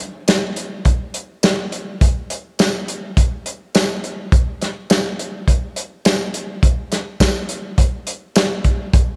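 A gritty, saturated sound with a rolled-off top and a moderate echo-chamber reverb frames this brooding, mournful blues fragment at 104 BPM in a straight 4/4, where an up-front acoustic soul drum kit of hi-hat, tight kick, medium-tuned snare and tambourine plays from 0.3 to 9.1 seconds in a tight booth with a pumping room sound.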